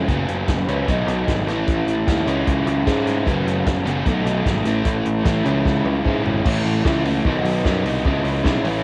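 A straight 4/4 pulse at 151 BPM drives this short indie rock excerpt, with a vintage acoustic drum kit sounding natural in a studio room, its punchy kick and medium-tuned snare joined by hi-hat, crash cymbal and toms under a rolled-off top and a cassette tape colour. Up front sits a crunchy, overdriven electric guitar playing a picked, double-tracked riff that spans F#2 to E4, also carrying the cassette tape character. Beneath it, a picked electric bass with a direct, growly tone holds the low end from F#1 to G#2. The chords cycle through F#sus4, B7, A and C#m twice before a drum fill from 5.7 to 6.5 seconds leads into a new passage moving through A, B and C#m. The whole thing has the jangly, carefree feel of a home recording on cassette, with studio ambience around the players.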